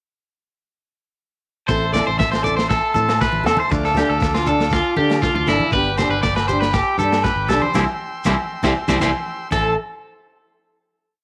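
A straight 4/4 groove at 119 BPM drives this short, warm and bittersweet highlife guitar band piece in A minor, where a twangy, slightly broken-up electric guitar with phaser and slapback echo plays an up-front arpeggiated ostinato over bright picked acoustic guitar strumming, a round fingered bass figure, a buzzy combo organ pad, a gritty saturated breakbeat kit and background shekere, ringing agogo bells and congas, cycling through Am, Dm, G and C to a band accent from 7.7 s and a final hit at 9.8 s.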